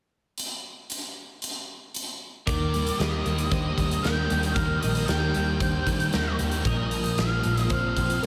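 This hazy, melancholic shoegaze and dream pop cut moves at 115 BPM in a straight 4/4. A huge arena drum kit opens alone at 0.4 seconds, its boomy kick, medium-tuned snare and hi-hat sitting up front in a pumping hall room. At 2.5 seconds the band arrives over an Ebmaj7 chord, with a dark, round, foam-muted electric bass anchoring the low end and a thick fuzz guitar churning out a distorted riff through lush chorus. Behind them, a mellow clean guitar plays a fingered riff through reverse reverb, while a bright, twangy twelve-string adds compressed arpeggios coated in analog chorus and diffuse ambient delay. An octave-fuzz lead guitar carries the melody between D5 and G5, trailing its own diffuse delay, before the harmony shifts to Bbsus2 at 6.7 seconds. A huge four-second reverb soaks the whole mix in a dreamy wash, and the passage is cut from a longer piece.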